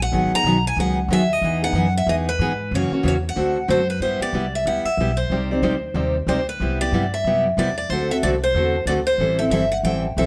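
A bright, concert-style picked steel-string acoustic guitar carries the melody up front, sitting in a plate reverb that sets it apart from the rest of the group. This short, charming and playful excerpt of acoustic string swing, or jazz manouche, moves at a brisk clip in four with a lilting swing on the eighth notes. A second picked steel-string guitar, a full-bodied dreadnought, plays the accompaniment just as close in the mix, entering at 0.1 s. Beneath them, a pizzicato upright bass with gut strings gives a woody, dark and thumpy low end. The harmony shifts through colorful seventh chords at the opening, then settles into a new passage at 4.0 s built around G6, Cmaj7, D7 and Am7. The whole trio sits in a lively studio room with a short reverb tail.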